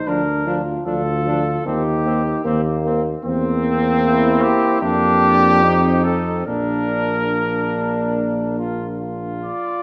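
Set in a moderately reverberant scoring stage, this stately, noble classical brass quintet excerpt in Bb major unfolds at a rubato 69-77 BPM, with a mellow, distant cornet carrying the melody up front over a punchy, smooth-topped tuba bass, while a clear, close-miked French horn and a soft-attacked trombone in the background provide accompaniment, a roomy flugelhorn adds a second line, and light vibrato colours the cornet, flugelhorn, horn and tuba as the harmony passes from Dm to a closing Bb at 6.5 seconds.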